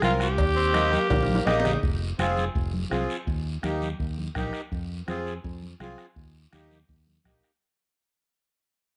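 A gritty, edgy alto saxophone leads this fiery, driving cumbia fragment over a reedy, slowly beating accordion, a warm, direct fingered electric bass, a softly struck bombo, thick-skinned congas in the background and a raspy guiro. A bright, punchy tenor saxophone with vibrato joins as a second line at 0.6 seconds, while ringing metal-shell cowbell and timbales come in at 0.4 seconds and a drum fill arrives at 1.1 seconds. From 1.8 seconds the horns, cowbell and timbales drop away, and the accordion, bass and percussion carry on through a long fade, all set in a small room with moderate spring reverb.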